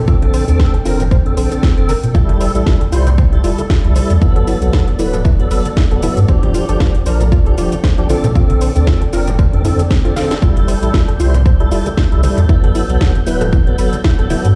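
Deep house at 116 BPM with a sunny mood and a lightly swung 16th feel, built on a punchy, up-front electronic kick, a house kit of cracking snare, metallic hi-hats and shaker, and bright, hard-handed congas set back in the mix, all moving over a deep, round sine sub bass. Lightly overdriven tonewheel organ stabs with key click, chorus vibrato, slow rotary speaker and tape echo carry the Bbmaj9, Fmaj9, Gmaj9 and Ebmaj9 changes, while a soft triangle-and-sawtooth pluck plays background arpeggios with chorus and tape echo, and a cloudy, blurred granular pad drifts in the background. The pluck, bass, organ and granular pad all pump with sidechain, a drum fill lands at 10.2 seconds, and a silky analog string pad with ensemble chorus slips in at 10.4 seconds, with the whole mix sounding like it is played through a big sound system in a bare room.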